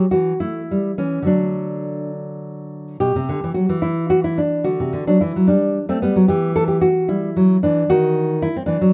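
Close, detailed microphones and light reverb place a solo nylon-string guitar up front, its fresh strings giving a deep, thumb-plucked classical tone. This radiant, serene baroque-style dance in 6/8 moves with a rubato feel at around 66-76 BPM, opening in D major before settling into G major from 3.0 s. The short passage, cut from a longer piece, moves through chords such as G5, D7 and Em before closing on an open, unharmonised moment at 7.9 s.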